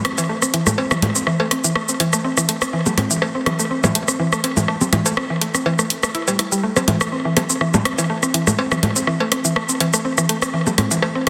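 A woody, round mallet-like synth pluck riff with chorus and digital delay carries this sparse, cool minimal techno piece in lightly swung 4/4, sitting up front beside an overdriven electronic hi-hat and shaker with bright hats and a tape-warm electronic rim click, cowbell, congas and bongos, while a barely audible punchy sine sub bass, which stops at 10.9 s, and a faint jazz brush drum kit lie beneath, set in a lush hall reverb with a dense, heavily limited modern master.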